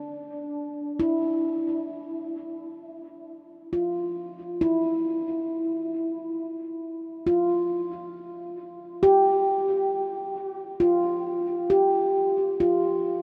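Weightless, warm ambient music at 67 BPM in a straight 3/4, taken from a longer piece, with a solo handpan sitting up front from 0.0 to 13.2 seconds in a D4 to G4 range. Struck with the fingertips, its ringing, meditative stainless-steel tones float through a diffuse ambient delay. From 2.8 seconds the harmony settles on E minor, all within a dark production and a huge, wet reverb with a 7.4-second decay.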